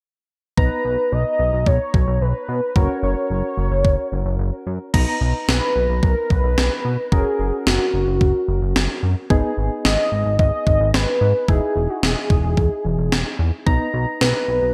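A steady, straight 4/4 pulse at 110 BPM drives this nostalgic, wistful synth-pop excerpt in B major, set by an up-front, sampler-style 80s drum machine with a thumpy kick, crashes and a snare drenched in gated reverb that carries a tape-warm, small-room character. Underneath, a glossy chorused synth bass built from pulse and sawtooth tones with ring modulation and a filter sweep sits low and prominent, ranging from E1 to B2. A velvety, full-bodied synth lead carries the melody between F#4 and D#5, its detuned unison sawtooth tone smoothed by chorus and vibrato. Soft, round electric-piano-like keys fill in the accompaniment further back in the mix, their decaying notes shimmering with chorus and tremolo. The harmony moves from Bmaj7 and F# through G#m and Emaj7 before returning to Bmaj7 at 13.7 seconds, with a moderate plate reverb and bright 1980s-style digital production tying the whole together.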